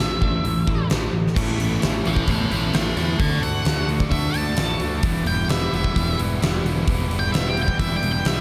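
A huge, up-front arena drum kit with a punchy kick, fat snare and bright cymbals drives this brooding, angsty quiet-loud alternative rock fragment, as a warm octave-fuzz lead guitar with slapback echo breaks into a solo at 1.4 s, the moment a thick fuzz guitar joins a tight distorted riff guitar in the background, over a growly overdriven picked bass, a very quiet, compressed, clean twelve-string electric playing arpeggios, and light small-room reverb.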